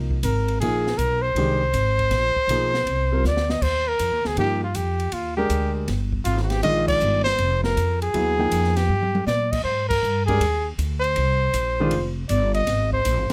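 Modal jazz with a searching, open swing feel, led by a breathy solo trumpet with light vibrato up front, over a woody, growly pizzicato upright bass, an intimate grand piano whose action noise is audible, and an acoustic drum kit with a high-tuned snare and boomy kick that plays fills at 3.2 and 8.9 seconds, in a dry, close, finely detailed recording cut from a longer piece.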